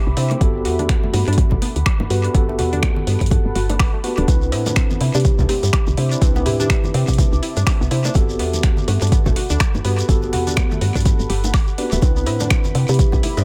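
A swung 124 BPM deep house groove in 4/4 rides on an up-front, overdriven electronic kick, with a drum kit of finger snaps, hi-hat and woodblock that also carries overdrive and tape echo, very quiet bright bongos and congas, and a grainy, close shekere that joins at 4.3 seconds. Beneath it, a woody, round FM bass and a moody, detuned pad holding sustained chords in the background pump with the sidechain, while a mellow tine electric piano plays stabs through tape echo and a nasal analog pluck spins arpeggios through chorus and phaser, all over Gmaj9 and Cmaj9 in C lydian. A buzzing, thumbnail-plucked kalimba adds brief delayed phrases in the background from 4.5 to 6.7 seconds and again at 12.3, giving this sunny, relaxed excerpt from a longer piece its echo-heavy, digitally ambient finish.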